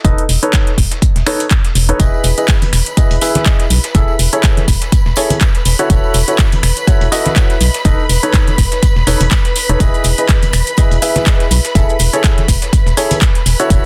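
A dense, heavily limited modern master in digital ambience carries this euphoric, feel-good piano house excerpt at 123 BPM in E major, where a present, polished baby grand piano riff with sidechain pumping, low-pass filtering and tape echo rides over a hollow, organ-like FM bass and an up-front punchy electronic kick, joined by a house kit of finger snaps, handclaps, metallic hats and shaker, a gritty sampler-style kit of hi-hat, snare and tambourine in the background, and, from 2.0 seconds, lush, woody violin section chords with vibrato alongside very quiet soft-handed tambourine and congas over chords moving from B9/E through Emaj7, Amaj7/E and F#m7/E.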